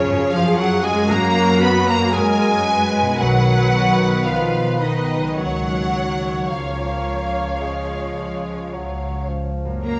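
A tender, warm slow movement for symphony orchestra opens at once with nearly the whole ensemble, heard here as a short cut from a longer piece, moving at about 52-59 BPM in 4/4 with a flexible, rubato feel. A distant violin section carries the smooth melody with light vibrato, while a second, clear violin section, a large flute ensemble with a pure tone and crisp attack, and a mellow solo clarinet weave supporting lines in the background. A lush viola section fills the middle of the texture, and French horns and a punchy trombone section hold sustained chords beneath. A very quiet concert harp adds ringing arpeggios, and the bass rests on an intense cello section and a focused double bass section placed up front, which enters at 0.1 seconds. A roomy solo bassoon joins the accompaniment from 6.5 to 9.8 seconds as the harmony moves from C#7/F# through F# and Bmaj7 to C#, all bathed in the reverb of a recital hall.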